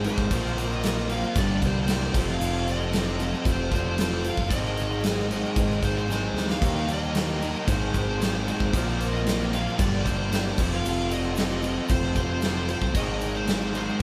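A big, up-front rock drum kit with a fat snare and punchy kick drives this brooding classic rock excerpt at 114 BPM in 4/4. A growling, dark overdriven bass sits underneath, while a sludgy distorted guitar, a double-tracked semi-hollow guitar and a very quiet cranked stack guitar grind out the riff over chords moving from Bbsus2 through Gm and F to Ab and Eb. A bright, smooth overdriven lead guitar carries the melody above, with a woody upright piano, a full tonewheel organ with key click and rotary speaker, a barely audible boxy parlour acoustic guitar and a grainy egg shaker filling in quietly, all played live in a stone room with moderate reverb and a drum fill at 6.1 seconds.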